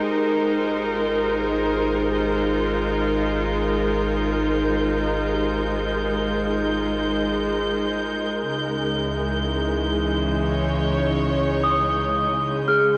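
Awash in a cathedral-sized reverb and the warble of worn cassette tape, this weightless, serene ambient fragment at 57 BPM in Ab major sets an up-front, biting symphonic string section holding shimmering chords from Abmaj9 to Dbmadd9 at 8.5 seconds, over a very quiet organ-like drone, a round analog bass that fades out across the passage, delicate bell-like celesta arpeggios, and a high, reedy chamber violin section on a single note.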